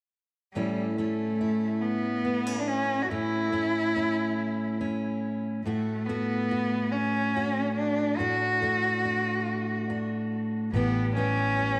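A bowed cello with a rich, nasal vibrato carries the melody up front from 0.5 s, touched by tape echo, over a bright, full-bodied fingerpicked steel-string acoustic guitar in this nostalgic acoustic folk excerpt in a slow 6/8 at 47 BPM in A mixolydian, moving from A to D/A before a woody pizzicato upright bass enters at 10.7 s on an A9 chord, the room carrying a moderate echo-chamber reverb.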